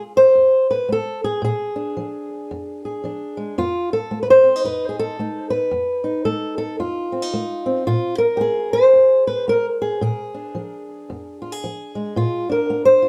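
A fingerpicked, ladder-braced acoustic guitar with old strings plays alone up front through this brief, swinging cut of acoustic country blues, its boxy, woody voice moving from F through Bb7 and F7 with a swaggering, soulful air inside a moderate studio ambience and a dark, warm production.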